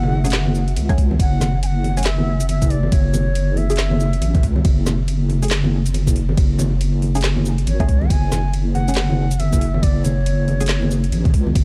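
Meditative and brooding, this deep dubstep excerpt moves at 139 BPM in a half-time, swung 4/4 feel in F# minor. It opens on an F#madd9 chord from a very quiet, detuned analog pad that drops out at 1.2 seconds, while an up-front, wobbling sine-and-square bass with chorus anchors the low end and distant congas with dub echo sit far back in a large room. A breathy, reedy ney carries the melody with vibrato, 12-bit sampler grit and dub echo, joined by nasal, warbling filtered chord stabs with phaser, an overdriven garage kit of woody snare, metallic hats, claps, ride and shaker, and a knocking overdriven electronic kick that enters at 0.9 seconds, all within a dark, digital ambience.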